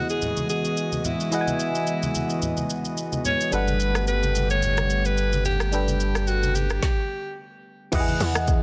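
Relaxed and warm, this amapiano excerpt at 109 BPM with a light 16th-note swing sets an edgy, breathy alto saxophone melody with delay over a biting, chorused FM electric piano, a soft, airy sidechain-pumped pad, tape-warm electronic drums with a deep kick, woody snare and metallic hats, and distant, low-tuned congas, while a round sub bass enters at 3.5 s as the harmony moves from Emaj9 to Gmaj9, a stop arrives at 6.8 s, and a tight, percussive log drum bass lands at 7.9 s on the return to Emaj9, in a dry, dense, heavily limited mix.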